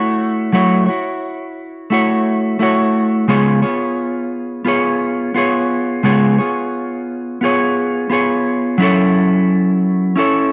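A lone clean electric guitar opens this short indie pop fragment, fingered and sitting up front for its full 10.5 seconds. Its tone is dark, with a subtle chorus and a vibrato effect giving the notes a gentle shimmer as it moves between the low and upper middle of its range. The harmony rests on F#m7, shifts to C#7 at 3.3 seconds, and returns to F#m7 at 8.8 seconds. A light swing in 4/4 keeps the unhurried phrasing relaxed. A moderate spring reverb surrounds the guitar with a soft, lingering space that deepens the mellow, lonely mood.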